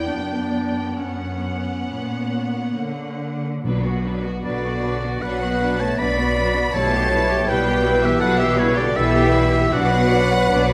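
Elegiac and solemn, this short excerpt from a slow romantic orchestral movement in B minor drifts with rubato at 65-83 BPM, as a distant, vibrato-rich violin section carries the melody over a second violin line, a clear clarinet, a lush viola section with portamento, and focused cello and double bass sections, while hard-mallet timpani sound from 3.6 to 7.8 seconds and a bright oboe, an airy flute and a mellow French horn section join at 4.4 seconds, all in a recital-hall reverb.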